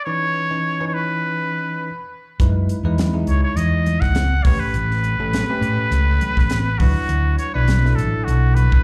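Heard live through a club PA, this funky, soaring electric jazz fusion excerpt with a swung sixteenth feel opens on a nasal, breathy straight-muted trumpet melody, intimate and close with vibrato, scooped notes, slapback and tape echo, over bell-like tine electric piano chords, lightly chorused, moving through C#m9, F#13sus4, A9 and D69, until a dark, round hollow-body fingered bass sitting up front, a crisp, polished drum kit with a high-tuned snare and tight kick, and very quiet, damped congas join at 2.4 s.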